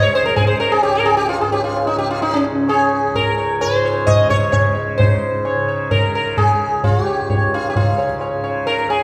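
A straight, even pulse in four carries this short Hindustani passage in raga yaman, cut from a longer performance. Close, low-tuned tabla enters at 0.1 s with a ringing voice, setting a radiant yet meditative mood. Up front, the plectrum-plucked sitar carries the melody, its round, buzzing tone haloed by shimmering sympathetic strings. Beneath it, a softly plucked tanpura holds a quiet, deep drone with a gentle buzz of its own. The music moves into a new section at 5.0 s, and the whole performance sits in the wet reverb of a recital hall, such as a church or concert hall.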